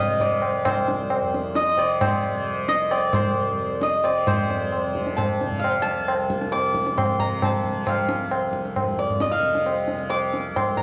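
A steady, straight 4/4 pulse at 133 BPM drives this Hindustani classical passage in raga Bageshri, centred on C and tuned to A4 = 439 Hz, cut from a longer piece. The santur carries the melody between C5 and D6, its hammered strings shimmering and ringing as they sit up front with a mellow glow. Beneath it, the tanpura holds a bright, buzzing drone from C2 to C3, softly plucked and placed lower in the mix. The tabla joins at 0.2 s, low-tuned and resonant, with a distant, large-room character even as it sits forward. The mood is longing and introspective, and the music moves into a new section at 4.3 s, framed by light reverb and a small room ambience.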